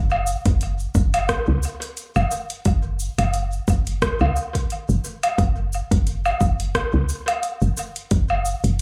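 A woody FM bass opens at 0.0 seconds, soft and round with a fast attack that decays into a dark tone, sitting up front and pumping under a sidechain. An afro-pop drum kit joins at 0.1 seconds with metallic hi-hats, rim click, shaker and woodblock, placed up front yet carrying the air of a large room and trailed by tape echo. An overdriven electronic kick drum enters at 0.5 seconds, deep and produced, and drops out at 8.3 seconds. The piece is organic downtempo at 88 BPM in 4/4, with a 56% swing on the sixteenths. The mood is hypnotic and meditative, and the echo-heavy mix sits in a small room ambience with light reverb across this short fragment cut from a longer piece.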